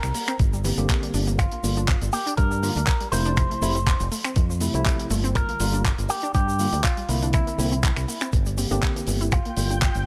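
A swung sixteenth-note groove in 4/4 drives this groovy, sleek nu-disco excerpt, carried by a dry, damped 70s drum kit with a rolled-off top that plays finger snaps, handclaps, hi-hat and shaker, while a thumpy, tape-warm electronic kick, re-recorded in a small room, enters at 0.4 seconds. A fingered electric bass sits low and direct beneath it, and a tine electric piano that sounds worn, slightly out of tune and lightly overdriven through built-in speakers joins with sidechain-pumped accompaniment chords. In the background, an analog pluck with a round, detuned, sawtooth-and-square character, a noise layer and a fast, short filter pluck spins arpeggios treated with chorus, sidechain pumping and digital delay. The melody comes from a dark, clean, compressed electric guitar played with the fingers through an envelope filter and digital delay. The harmony moves from C7sus2 through Fmaj7 and Gm7 to C9. 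At 9.3 seconds, a lush, thick, warbling unison pad with a vintage, detuned sawtooth sound and a slow attack swells in high with chorus and sidechain pumping, all held together by a small room ambience.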